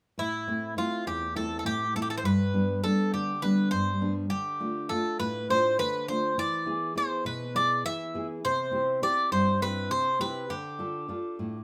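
A bright, metallic Greek bouzouki with its picked double strings, some doubled at the octave, carries a bittersweet, brooding melody over fingerpicked nylon-string guitar, full-bodied and deep with audible finger squeak, in this short Greek folk excerpt in a straight 7/8, both instruments up front in a moderate studio reverb as the chords move from Am through G, Dm, E and C back to Dm.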